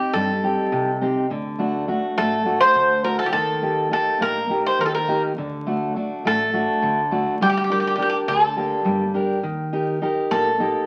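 A bright, metallic bouzouki with double strings carries the melody up front in this moody, cool excerpt of Greek folk in a straight 7/8. A full-bodied, fingerpicked steel-string guitar with old strings sits beside it, moving through chords from Cm to D, Eb and Gm, while a thumpy pizzicato upright bass with gut strings stays in the background. The sound has the crackle of a very old 78 rpm record and the moderate reverb of a large studio.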